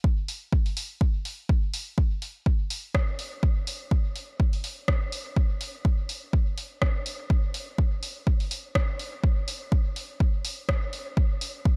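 Deep and meditative, this techno excerpt at 124 BPM in 4/4 with a 16th-note swing of 55% pairs an up-front, overdriven, layered electronic kick drum running from 0.0 to 11.8 seconds with a punchy analog drum machine of hi-hat and rim click, re-recorded in a large room and sitting further back, entering at 0.3 seconds, all in a dry mix with little reverb.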